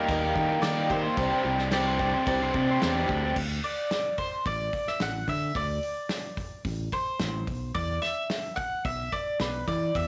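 Folk rock and heartland rock with a hopeful, open-road mood, this excerpt is led by a bright, woody mandolin melody up front, backed by growly fingered electric bass and a natural country drum kit with a fat snare and punchy kick. In the opening stretch a shimmering, octave-doubled twelve-string acoustic, a reedy, breathing pedal harmonium and a lo-fi, overdriven garage guitar riff fill out the sound, with a twangy pedal steel guitar adding a clean second line from 1.7 seconds until these parts drop out around 3.4 seconds. The recording itself is blown-out and overdriven, set in a small room with light reverb.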